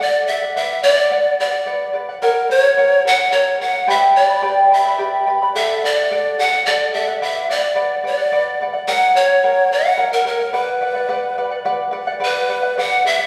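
Set in a wet, resonant recital-hall space, this excerpt of earthy, wistful Andean folk in B minor moves in 6/8 at 72 BPM (dotted quarters), with a close-miked wooden pan flute carrying the melody up front in a breathy, bright tone marked by tongued chiff, vibrato and an unsteady quality, while a fingerpicked charango accompanies throughout, its double strings, some doubled at the octave, giving a shimmering acoustic glow.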